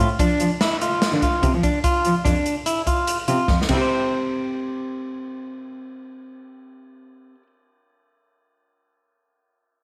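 Progressive instrumental band music in 5/4 at 146 BPM in C major, with an intricate, bright mood in this short excerpt cut from a longer piece. A dark, slightly broken-up electric guitar sits up front playing fingered arpeggios, while a distant bowed cello carries the bass with vibrato and portamento, and an airy, polished big-band drum kit with a punchy kick and medium-tuned snare swings beside it until both drop out at 3.8 seconds. A drum fill at 3.5 seconds leads into the second section at 3.9 seconds, where the guitar continues alone until 7.5 seconds in a small room with moderate plate reverb.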